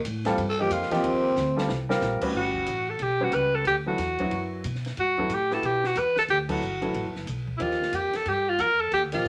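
A wet studio ambience surrounds this short modal jazz excerpt, which has a spiritual, open mood and a brisk swing feel. Upright bass, pizzicato on steel strings with a woody tone, and a compact cocktail drum kit run throughout. The kit has a tight, natural sound with dark cymbals, a high-tuned snare and a punchy kick, and plays a fill under the opening. A growling tenor saxophone, breathy and raspy with a soft attack, takes a brief solo from 0.5 seconds while a present upright piano with short sustain fills in the harmony. The clear alto saxophone then carries the melody from 2.4 seconds, up front with light vibrato, subtone and scooped notes that give it a vintage jazz character. The whole band strikes an accent at 6.5 seconds.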